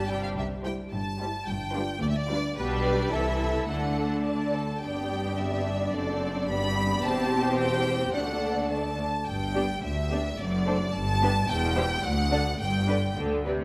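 A string orchestra opens together in a quick, spirited classical-period movement in G major at 108 BPM in 2/4, with a clear, up-front first violin section carrying the smooth, vibrato melody over a darker, expressive second violin line, a rich, distant viola accompaniment and a smooth double bass line. A focused cello section joins the bass at 0.1 seconds, and the cheerful harmony moves through simple cadential chords as the music passes from its opening phrase into a second section at 4.8 seconds. The lush ensemble sits in a wet scoring-stage reverb, and this excerpt is cut from a longer piece, ending on an open G chord.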